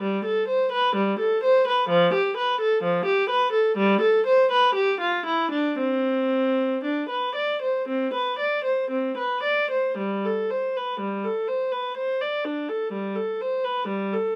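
A light reverb surrounds a single bowed viola placed up front in this short classical recording. The piece is a baroque-style suite movement for unaccompanied viola in 4/4, played with a flexible rubato that keeps its dance-like lilt feeling serene. The one player uses a period style, drawing a warm, gut-string, reedy tone with a smooth top across a range from F3 to D5. The viola plays alone from 0.0 to 14.3 seconds, and at 10.0 seconds the opening material returns while the music settles into G major. Cut from a longer work, it offers a calm, graceful glimpse of the movement.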